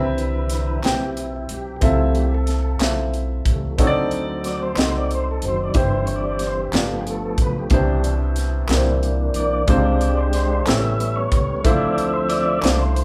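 A woody pizzicato upright bass, an up-front baby grand piano and a clean tonewheel organ with key click and slow rotary speaker open this uplifting, hopeful slow gospel excerpt in 6/8 at 61 BPM in C major, the organ taking the solo over chords running from Cmaj7 through D7b9, G7 and A7 to Dm9, while a crisp fusion kit with punchy kick and high-tuned snare joins at 0.2 seconds and very quiet, hollow group handclaps arrive at 0.8 seconds, all played live in one large studio room with moderate reverb and a faint mains hum.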